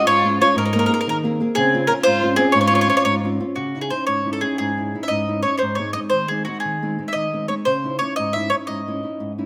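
A lilting 6/8 pulse at 118 BPM, counted in dotted quarters with a straight feel, carries this Italian folk serenade, a brief fragment lifted from a longer piece. The mood is passionate and wistful, opening in Db major over chords that move from Db/Ab through Abadd9 to Dbmaj7, then turning to C# harmonic minor at 3.6 seconds, where C#madd9 and G# take over. A bowl-back mandolin sits up front with the melody, its picked double strings ringing between F#4 and E5. A single bowed violin adds a second line beneath it, warm with vibrato, expressive portamento and a smooth top, until it stops at 3.2 seconds. A small, fingerpicked nylon-string guitar also sits up front, supplying the accompaniment across the whole passage. Close, detailed microphones capture the playing within a moderate recital hall reverb.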